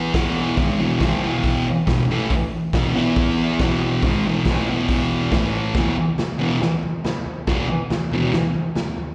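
Heard live through a venue's PA with the echo of a recital hall, this raw, rowdy garage rock fragment puts a thick, double-tracked fuzz guitar riff up front, picked with slapback echo and moving from E to A5 at 5.3 seconds and on to E5 at 5.8 seconds, while a dark, up-front acoustic drum kit with a punchy kick, medium-tuned snare, hi-hat and toms carries on alone after the guitar stops at 8.3 seconds until 9.1 seconds.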